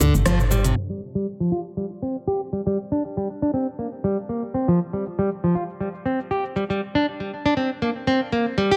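A swung sixteenth-note afro house groove opens with a drum fill from the deep house drum kit's smooth hats, rim clicks, shaker and toms, while a round, woody FM bass sounds from the very start, hitting a band accent at 0.3 seconds over a D minor chord before dropping out at 0.7 seconds. The fingerpicked nylon-string guitar carries full-bodied classical arpeggios with audible finger squeak, roughened by vintage 12-bit sampler grit and dub echo as a filter sweep runs through it from 0.8 seconds to the end. The drums fall away at 6.8 seconds, and a moderate plate reverb gives this short, driving and spiritual cut from a longer piece a soft sense of space.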